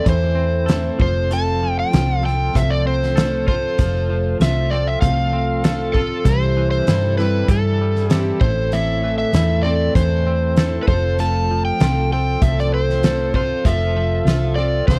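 An overdriven slide guitar, played with fingerpicks, carries the melody up front, its gritty tone trailed by tape echo as it moves between A4 and A5. This folk rock and heartland rock passage, cut from a longer piece, moves at a steady 97 BPM in straight 4/4 with a warm, jangly mood. Beneath it, a picked, plugged-in twelve-string acoustic guitar gives a full-bodied, shimmering, octave-doubled accompaniment, while a bright, clean, twangy electric guitar plays a riff with tremolo in the background. A hollow-body short-scale electric bass, fingered and amped, sits up front with a dark, round sound, arriving at 0.1 s alongside a loose indie drum kit whose fat snare, punchy kick and hi-hat breathe in a pumping studio room. The harmony cycles through Am, F and C6, and the dry mix carries little reverb.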